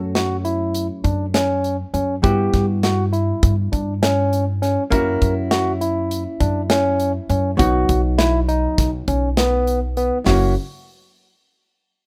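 A barky, clean tine electric piano plays arpeggios through a combo amp, sitting up front alongside a woody, pizzicato upright bass and an acoustic drum kit with a tight kick and medium-tuned snare. This brooding, intricate progressive instrumental moves in 9/8 with a straight feel. A dark, compressed hollow-body guitar picks a quieter accompaniment over a chord cycle from F#m through Emadd9/G and F#7 to B, all in small-room ambience with a rough home-demo character, in a passage cut from a longer piece.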